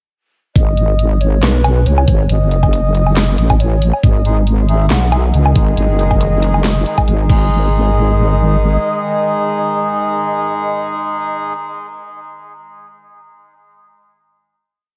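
A cavernous, heavy sound sits in light digital ambience in this complete deep dubstep piece, which runs at 138 BPM in a swung half-time 4/4 feel, in G# minor and tuned to A4 = 438 Hz. The drop arrives at 0.6 s. An up-front wobble bass built from detuned sawtooth and sine layers, saturated and chorused, holds long dark notes, while a knocking electronic kick and a layered, produced kit carve out the half-time beat with a huge snare, claps, hi-hats, a low woodblock and crash. Above, a low end-blown ney with a soft attack, rolled-off highs, vibrato and dub echo plays expressive, motif-based call phrases. A reedy, nasal melodica, also treated with dub echo, adds off-beat chord stabs that move one shape in parallel, and a tense, string-like drone with ring modulation and built-in reverb sustains chords underneath. The beat drops out at the final hit at 7.5 s, and the ney, melodica and drone carry on to the close.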